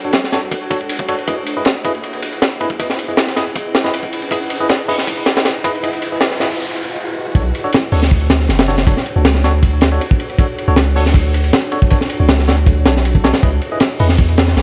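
A crunchy, saturated breakbeat kit sits up front with a punchy kick, high-tuned snare and dark, rolled-off cymbals, driving this nostalgic, raw drum and bass and jungle excerpt at 158 BPM in B dorian through a small room with vinyl crackle. A clean tine electric piano plays filtered stabs with dub echo over Dmaj7 and Emaj7 while an electronic riser and noise sweep build toward a brief break. At 7.4 seconds the drop lands with a deep, sine-like 808-style bass with fast attack and long decay under a rootless Bm7 that later moves to C#m7.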